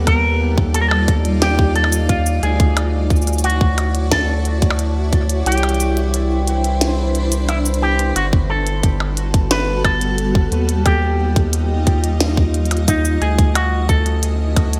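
Playful yet wistful, this IDM excerpt moves at 89 BPM in a straight 4/4, cut from a longer piece and bathed in a bright, 1980s-style digital sheen with light reverb. A round, deep analog bass sits up front with a fast attack and dark, sustained tone, anchoring a drifting harmony of lush ninth chords that opens on Ebmaj9 and passes through Dmaj9, Cmaj9 and Gmaj9. Above it, a granular cloud pad blurs and evolves with detuned, slow-blooming chords, while a clean, picked electric guitar through an envelope filter carries a dusky melody trailed by delay. The electronic kick is tight and tape-colored, and it drops out between 5.5 and 8.2 seconds before returning. Around it, a glitchy kit of tiny snare, clicky hi-hats, cabasa and percussion blips, re-recorded in a large room, sparkles with gated reverb and digital delay.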